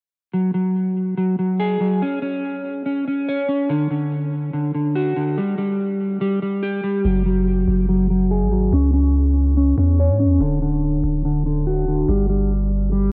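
Worn, warbling cassette-tape sound with light reverb frames this brooding, dark trap excerpt at 143 BPM in a half-time feel, where a mellow, clean, fingered electric guitar plays up-front arpeggios through subtle chorus, delay and a low-pass filter over chords like F#sus2, D and C#m, and a deep, sine-toned 808-style bass with long decaying notes enters at 7.0 seconds as a filter sweep moves across the guitar.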